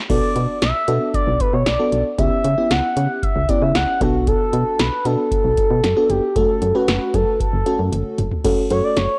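A straight 4/4 pulse at 115 BPM drives this nocturnal synth-pop piece in B minor, anchored by an up-front electro analog drum machine with a deep kick, punchy snare and metallic hats, and a round, mellow FM bass moving through Bm7, C#m7b5 and F#m, with a drum fill at 7.9 s. Over a lush, dreamy FM electric piano layered with a soft pad and treated with chorus and phaser, a smooth, dark sawtooth-and-sine lead glides between notes with portamento and vibrato, colored by chorus and analog delay. The sound is dry and gritty, like a hardware recording, with light reverb.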